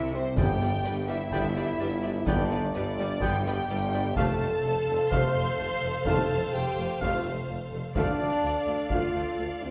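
A straight 4/4 pulse at 127 BPM drives this adventurous, triumphant cinematic orchestral piece, where lush bowed violins carry the melody above a focused second violin line, distant violas, cellos, clear double basses and a vintage-toned tuba, while a mellow French horn section holds chords, a tight, very quiet trombone section adds more, a soft-attack trumpet plays stabs, a distant taiko ensemble plays with heavy sticks and timpani sound only until 1.0 s, over chords of G, F and Dm in a reverberant hall.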